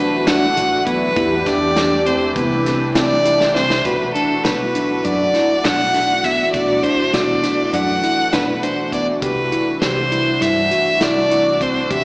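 Tense and driving, this progressive instrumental excerpt moves in 9/8 at 201 BPM in eighths, in B phrygian, with a clear, focused violin carrying the vibrato-laden bowed melody up front under digital delay, while a mellow vibraphone with soft mallets rings in the background with slapback echo until 3.5 s. A swirling, detuned analog pad with phaser and chorus, bell-like tine electric piano arpeggios and a round, woody fretless bass fill out the harmony, and a dry soul drum kit with a punchy kick joins at 0.3 s, playing a fill at 3.4 s before the music moves into a longer second section. The sound is that of a live gig heard through the venue's PA, with moderate club reverb and a small-speaker quality.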